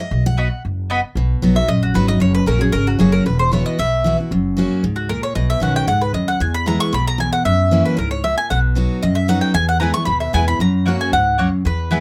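Close, detailed miking and light reverb give this lively, rustic bluegrass excerpt an intimate, up-front sound, moving at a brisk 229 BPM in straight 4/4 in B major. A full-bodied dreadnought guitar with fresh strings picks the accompaniment from the start, joined by woody pizzicato upright bass and brief double-string stabs from one warm mandolin. A second, mellow and round-toned mandolin carries the picked melody from 1.6 seconds, while the stabbing mandolin returns at 9.8 seconds over chords moving between B, F#, E and F#7.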